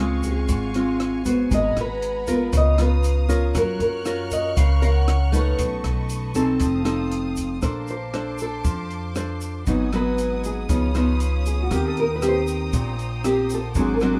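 A full-bodied, fingerpicked nylon-string guitar melody opens this relaxed, sunny bossa nova excerpt in Db major at 118 BPM, over a small, thumb-plucked second nylon-string guitar, a woody pizzicato upright bass up front and a lush, bowed violin section holding sustained chords; a dark, compact cocktail drum kit of hi-hat, punchy kick and rim click joins at 0.2 seconds with a grainy tube shaker in the background, the lead guitar takes a solo from 7.6 seconds, and light reverb gives the sound a soft sense of space.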